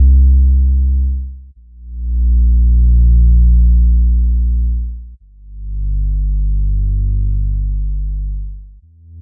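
A round, deep analog synth bass, dark and detuned, sits up front in this luminous, serene ambient fragment in free time, its sustained tones fading out over the full 9.2 seconds with the dry, close grain of cassette tape.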